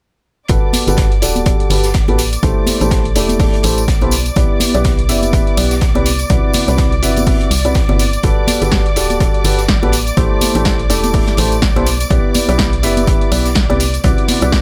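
Euphoric and feel-good, this piano house excerpt rides a swung 124 BPM groove in G major, cycling through Gmaj9, Am7, Em7/B and Cmaj9#11. A clear, woody upright piano riff sits up front with a low-pass filter, digital delay and sidechain pumping. The pumping also shapes a hollow, organ-like FM bass and muted, veiled con sordino strings holding sustained chords high above. The beat stacks a punchy analog electronic kick with drum-machine snare and hats, a gritty, saturated breakbeat kit tucked in the background, and bright, dry tambourine and congas, all playing from 0.5 to 14.6 seconds within a studio reverb.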